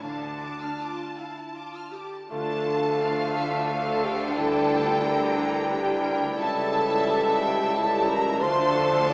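In a rubato 3/4 at roughly 77-90 BPM, this slow, lyrical romantic movement for symphony orchestra unfolds in D minor, a short passage cut from a longer work. A lush, softly bowed violin section carries the expressive melody with vibrato alongside a second violin section whose intense, distant line sits higher, while a bright, close-miked clarinet adds a very quiet second line beneath. Smooth violas, rich cellos and distant double basses fill the background, and a very quiet concert harp rings out fingerpicked arpeggios. At 2.3 s the texture deepens as a pure, hollow silver flute adds a second line, a clear bassoon joins the accompaniment, a mellow French horn section and a vintage-toned trombone section hold sustained chords, and a roomy tuba reinforces the bass. The harmony moves from Dm through Em7b5/D and A7/C# before settling back on Dm at 8.4 s, all heard through a wet recital hall reverb with a small speaker sound.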